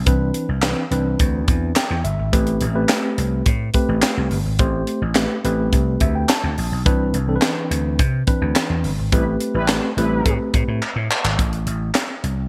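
Early-eighties boogie funk at 106 BPM in A minor, this short cut from a longer piece has a danceable, late-night mood and a straight 4/4 feel. A tight funk drum kit with a high-tuned snare, tight kick, handclaps and hi-hat sits up front with gated reverb, while a growly, amped vintage slap bass shares the foreground and runs from the opening second to 12.5 seconds. A mellow, clean tine electric piano supplies the accompaniment, adding short fills around 1.5 and 5.7 seconds as the harmony moves between Cmaj9 and Am9. At 9.1 seconds the band hits an accent and a brassy, detuned synth brass line with chorus and vibrato briefly appears, followed by a drum fill at 10.8 seconds leading into a closing A minor chord. The bright digital production carries light reverb and a small room ambience.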